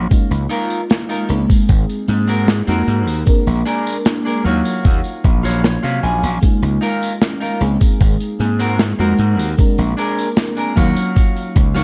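Vaporwave with a nostalgic, woozy mood, built on a lush, detuned FM electric piano with a soft pad layer bathed in phaser, chorus and analog delay, a punchy overdriven slap bass, a thumpy, tape-warm electronic kick up front beside an airy acoustic kit of hi-hat, snare and tambourine roughened by 12-bit sampler grit, and a clean picked electric guitar riff entering at 0.5 seconds with a fill from 5.2 to 6.4 seconds, all cycling through rich extended chords in a dark, warm production cut from a longer piece.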